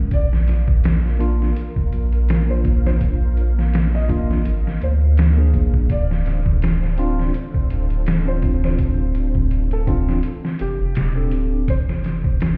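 Heard muffled as if through a wall with a stony room tone, this cinematic, hypnotic trip hop excerpt at 83 BPM with a lightly swung 16th feel sets gritty, pitched-down sampler drums with a thumpy kick up front beside a round, sine-like sub bass, while a clean tine electric piano with tremolo and tape echo plays the accompaniment, a soft felt-muted upright piano carries an intimate melody, and a vintage string machine cello patch with ensemble chorus holds full, mellow chords in the background over Bb and Dm7, with a break from 10.2 to 11.7 seconds.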